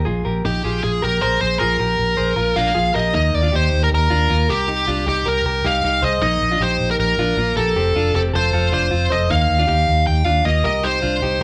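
A clean, direct-recorded electric guitar opens this bright, youthful slice of jangly indie pop, picking compressed arpeggios alongside a round, punchy muted bass that sits up front with a dark, amped tone. At 0.5 seconds a dark, smooth lead guitar enters with an overdriven melody, carrying the tune high over the band in Eb major at a brisk 156 BPM in a straight 4/4. The chords move from Bb7(no3) into a passage built on Ebadd9, Cm7, Bbsus4 and F, with the shift arriving at 3.1 seconds. The foam-muted fingered bass anchors the low end while the warm guitar arpeggios ring beneath the lead. The band sounds as if playing live together in a large studio, with moderate reverb lending the parts a shared sense of space. This is a short cut from a longer piece, running about 11.4 seconds.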